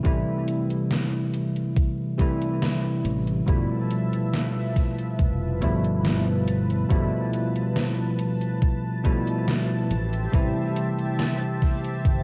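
Vaporwave in a hazy, melancholic mood, this clip sets a bell-like tine electric piano with chorus and delay over a growly fingered electric bass, a thumpy overdriven electronic kick sitting up front, and a gritty 12-bit drum machine whose hi-hat and gated snare were re-recorded in a large room, while a thick, warbling detuned sawtooth pad fades in at 3.5 s across an Am7 to G13 change, all soaked in plate reverb and cassette-tape haze.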